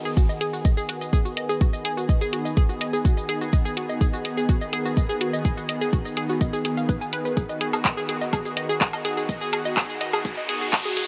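A punchy, up-front electronic kick drives this dark, melancholic melodic techno excerpt at 125 BPM in G# minor, alongside a layered house kit of handclaps, bright hats, shaker and woodblock. Above them, a round analog pluck spins arpeggios through chorus and digital delay, while a thick, airy, detuned unison pad holds sustained chords with chorus and phaser. Both pump against the sidechain under a filter sweep as the harmony moves from G#m to B at 7.4 seconds. The passage works as a build-up in a lightly reverberant, high-passed mix, with a very quiet riser entering at 9.0 seconds.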